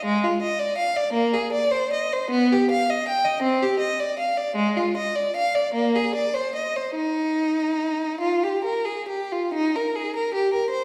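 A lone bowed violin opens this brief, baroque-style suite movement in 6/8, its line unfolding with flowing, introspective rubato. The tone is clear and focused, shaded by vibrato, and the single player sits close and up front in the mix, ranging from Ab3 up to G5. Around the instrument, a wet recital-hall reverb with a 1.6-second decay gives the impression of hearing the room from further back, while vinyl crackle lies beneath the sound. At 9.5 s the music turns to a new section, which the violin carries until the fragment ends at 10.8 s, cut from a longer piece.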